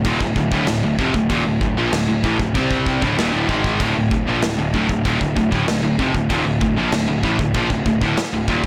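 A blown-out, overdriven recording in a light reverb carries this aggressive, heavy metal fragment, cut from a longer piece, where a big, up-front acoustic rock kit with punchy kick, medium-tuned snare and bright crash cymbals drives three picked guitar riffs (a warm, double-tracked crunchy guitar kept very quiet, plus two bright distorted guitars in the background, one overdriven and one compressed) over a growly, fuzz-laden picked electric bass with tube saturation, all sitting on a single D minor chord for 8.7 seconds.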